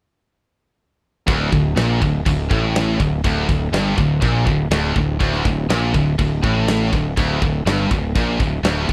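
A growly, fuzz-soaked fingered electric bass sits up front in this dark, epic heavy metal excerpt at 122 BPM, kicking in at 1.3 s on a D5 riff with a pair of bright, high-gain distorted guitars and a double-tracked crunchy overdriven guitar in the background, while a big acoustic rock kit with a punchy kick, fat snare, crash cymbal and stone-room character drives the band through to 8.9 s in a dry, close 1970s-style studio sound.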